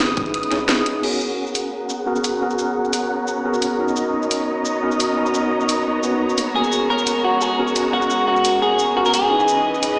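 A mellow tine electric piano with digital delay and dark, veiled con sordino strings, carrying sidechain pumping and a low-pass filter, open this dreamy, rolling liquid drum and bass piece, while a deep sine sub bass sits in the background for only the first 0.7 seconds. An overdriven, layered electronic garage kit drives along with a cracking snare, hi-hat, shaker and crash cymbal, and a filter sweep runs across the strings from 1.0 seconds. At 6.6 seconds a clean, picked electric guitar enters up front with the melody, colored by subtle chorus and tape echo, and the mix sits in a lush hall reverb that sounds like a big system playing in a bare room.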